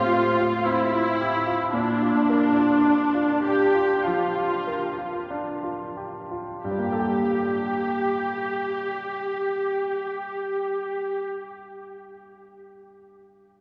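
Bittersweet and sorrowful, this cinematic excerpt in G dorian moves in a rubato 4/4 at 44-58 BPM and slows through its opening 6.6 seconds, as a bright, up-front grand piano and a lush, focused viola section with vibrato share the accompaniment over F/A and Bb before settling on Gmadd9, the violas stopping at 11.2 seconds and the piano at 13.6 seconds, inside a wet cathedral reverb with a 5.2-second decay and tuned to A4 = 441 Hz.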